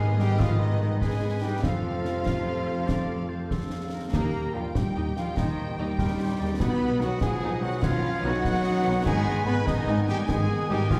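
An 11-second cut from a heroic adventure film score in 12/8 at 97 BPM opens with strings, winds, brass and harp all together: a background violin section carries the soaring melody over a lush bed of a second violin line, a pure, distant flute and a roomy solo oboe, while a very quiet viola section supplies accompaniment and a mellow horn section and a punchy trombone section hold sustained chords. A ringing harp plays arpeggios, a dark trumpet adds stabs, and rich bowed cellos and close double basses anchor the bass as the chords move from Abm through F, Eb and B back to Abm. From 0.2 s, snare, bass drum and dark clash cymbals drive the adventurous mood, all set back in a wet scoring-stage reverb.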